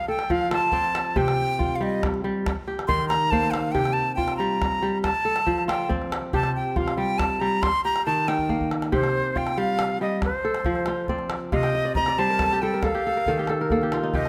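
West African traditional music in a flowing, hypnotic 12/8 at 93 BPM in C dorian, where a bright, airy silver concert flute with vibrato and an unsteady edge carries the melody up front over a ringing, fingerpicked kora's arpeggios and a deep, saturated calabash entering at 0.2 seconds, with a drum fill leading into a second section at 8.9 seconds and a kora fill from 11.5 seconds, all in a moderate recital hall reverb in this excerpt cut from a longer piece.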